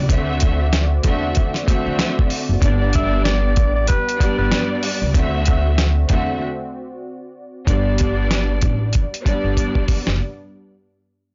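A swung, head-nodding boom-bap groove rides on a gritty, compressed sampler-style drum kit with a thumpy kick, paired with a woody pizzicato upright bass, giving this soulful hip-hop excerpt a warm mood. A dark, lush bowed string section with vibrato sits up front, while a soft, detuned sawtooth analog pad hums in the background until 7.7 seconds. A breathy tenor saxophone slips in with scooped jazz notes between 2.8 and 4.7 seconds, the track breaks from 6.4 to 7.7 seconds, and a drum fill arrives at 9.6 seconds, all on a blown-out, overdriven recording with a muffled top and little room sound.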